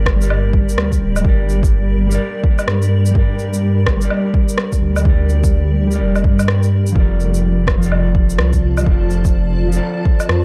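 A clean, fingered electric guitar, a cloudy granular pad and a deep, detuned sawtooth bass open this rainy, wistful future garage fragment together. The kick and a layered kit of rim click, shaker and woodblock enter at 0.1 s and set a swung 16th-note feel at 126 BPM in 4/4. The guitar, pad and bass all pump through sidechain compression. Echoes of delay trail the dark guitar, while the full-bodied pad drifts in with a slow attack and blurs into its own built-in reverb. The saturated, rumbling bass sits up front beside a punchy, produced kick that was re-recorded in a small room. Harmony rests on G minor before moving to F6 at 7.0 s, and the whole passage carries a dark, warm production with light reverb.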